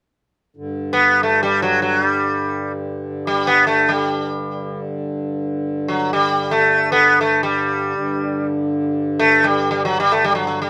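A reedy, breathing pedal harmonium drone opens at 0.6 s, sitting low and boxy beneath the sitar that enters at 0.9 s to carry the melody in raga hamsadhwani on G. This Hindustani classical passage unfolds in free time with a radiant, meditative mood. The plectrum-plucked sitar sounds round and up front, its buzzing tone ringing with shimmering sympathetic strings, while the dry outdoor recording continues until this fragment of a longer piece ends at 10.7 s.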